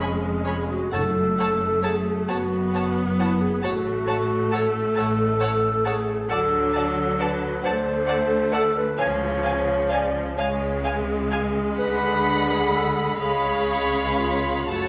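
A dark solo clarinet stands out in this slow, yearning movement for symphony orchestra, carrying a second line in its low and middle range while a warm violin section sings the melody above it. In 6/8 with flexible rubato, this elegiac passage is cut from a longer piece, and its harmony moves between minor and major chords toward a dominant seventh at 13.2 s. A second violin section adds a focused, vibrato-laden second line beneath the melody, and the violas bow a smooth-topped accompaniment. Cellos and double basses share the bass, the cellos lush, even and close. Timpani struck with hard mallets sound briefly in the background from 0.9 to 2.3 s, and a recital hall reverb lends the orchestra a wet, resonant bloom.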